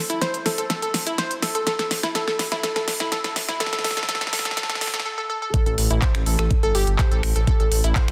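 Progressive house at 124 BPM in A minor, this short cut from a longer piece feels bittersweet and expansive. A glassy, crystalline wavetable pluck carries arpeggios between E4 and C5 from the start, its fast, decaying attack colored by chorus, dub echo and sidechain pumping. Alongside it, a pop drum kit of finger snaps, handclaps, crisp hats and a fat snare builds up with a drum fill over Am before the harmony drops away, followed by a short break at 5.1 seconds. The drop lands at 5.5 seconds on an A7(no3) chord as a knocking, tape-tinged electronic kick enters up front, and moments later a dark, detuned saw bass rumbles in between G1 and A1 with beating unison voices and its own sidechain pumping. A lush hall reverb and a dense, heavily limited modern master give the sound a full, polished sheen.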